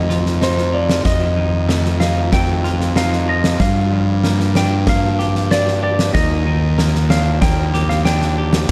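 This brooding, melancholic post-rock fragment opens with three parts at once: a dark, clean lap steel guitar carrying the slide melody between C5 and G5, a picked twelve-string electric guitar laying compressed arpeggios in the background, and a fuzz-soaked fingered electric bass sitting up front between Eb2 and G2. A huge arena drum kit joins at 0.1 seconds, its punchy kick, fat snare and bright crash cymbals sounding acoustic and hall-like. The tempo is a straight 94 BPM in 4/4, tuned to A4 = 438 Hz, and the harmony moves from F7 to Gm7 at 3.6 seconds and Ebmaj7 at 6.1 seconds. Analog delay trails both the lap steel and the twelve-string, while overdrive gives the bass its gritty weight. A small room ambience and warm production keep the overall sound shadowy, and the passage runs just under nine seconds, cut from a longer piece.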